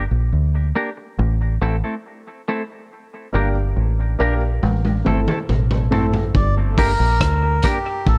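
Dub reggae in G dorian at a meditative, spacious 70 BPM, where a round, foam-muted fingered bass sits up front beneath a clean, hollow-body semi-hollow electric guitar bathed in lush chorus and dub echo; a dark baby grand piano adds mellow, long-sustaining stabs with dub echo from 3.3 s, a muffled, lo-fi vintage drum kit with a punchy kick enters on a fill at 4.6 s, and a reedy, breathy melodica carries the melody up front with dub echo from 6.4 s, the whole mix set in light reverb and studio ambience.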